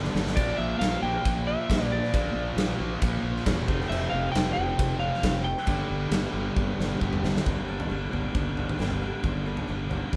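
A slightly broken-up, twangy electric guitar carries the melody from 0.4 to 6.1 seconds, its high line wavering with a warbly pitch drift in this angsty, brooding slice of quiet-loud alternative rock in a straight four. Beneath it, a scooped high-gain guitar and a bright overdriven electric guitar set further back grind out the riff over chords moving from Bb to F to Gm. A dark, round fuzz bass played with the fingers anchors the low end, while a big acoustic drum kit sits up front with a punchy kick, a medium-tuned snare, ride, crashes and toms, opening with a fill and rolling through another before the change. At 7.5 seconds the overdriven guitar drops out and a picked steel-string dreadnought enters in the background, its fresh strings and audible finger squeak spinning out arpeggios beneath the heavier parts. The band sounds as if it was captured playing together in one stone room, whose moderate reverb gives the drums a lively, ringing edge.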